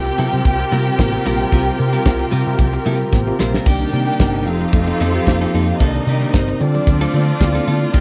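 A damped, up-front 1970s drum kit with a tight kick and medium-tuned snare drives this sultry, danceable disco excerpt at 112 BPM in C dorian, joined by a dark, round hollow-body bass, a clean, compressed picked electric guitar and a mellow tine electric piano sitting in the background. Two lush, bowed string sections with vibrato carry a second line and sustained chords, while bright, high-tuned congas enter at 0.3 seconds, very quiet, and a grainy egg shaker adds texture. An electric piano fill from 2.6 seconds and a drum fill from 3.1 seconds lead into a new section at 3.7 seconds, where the harmony shifts from the opening Gm11 to Cm9, then F7, back to Cm9 and on to Dm7, all within a dry, close studio sound.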